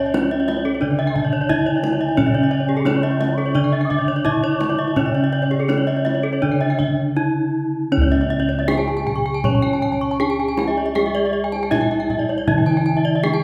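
Bronze metallophones and bossed gongs ring out together from the start of this shimmering, brilliant Balinese gamelan passage in C# pelog, moving at 79-88 BPM in a straight 4/4. The melody, a low accompaniment and two arpeggio lines mostly sound bright and struck with horn mallets, with paired tuning that gives shimmering beats, while one metallophone played with padded disc mallets sounds dark and smooth; the gongs carry a round, beating bass, and a tight, distant kendang under soft hands adds percussion. An airy, expressive bansuri with vibrato joins as a second line from 1.1 to 7.4 seconds, all set in the reverberant bloom of a recital hall in this fragment cut from a longer piece.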